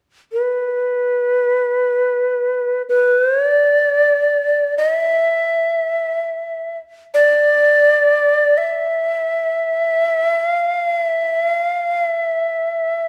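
A moderate concert-hall reverb surrounds this brief fragment of Japanese traditional chamber music, which is austere and calm in mood. A solo bamboo shakuhachi enters at 0.3 seconds and plays up front until 13.1 seconds, moving between B4 and E5. Its tone is breathy and bright, with a crisp, chiffy attack and vibrato.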